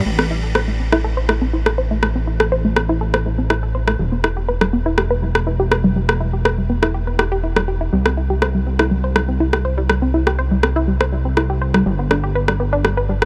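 Set in a light reverb, this dramatic, cinematic melodic techno excerpt pairs lush, detuned unison pluck arpeggios, colored by cassette tape and digital delay, with a gritty, saturated sawtooth synth bass and an overdriven electronic rim click up front, moving through Am, Em, C5 and G.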